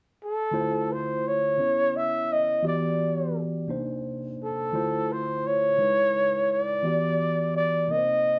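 R&B in a slow 6/8 at 57 BPM, this sultry, late-night fragment of a longer piece opens with a breathy, whispered, intimate flugelhorn melody at 0.2 s, played up front with jazz-style vibrato and a soft attack, before a clean, mellow tine electric piano, heard through its built-in speakers, enters at 0.5 s with minor chords such as Dm9, C#m7, Em9 and Cm9, the two players performing together in one room with moderate studio reverb.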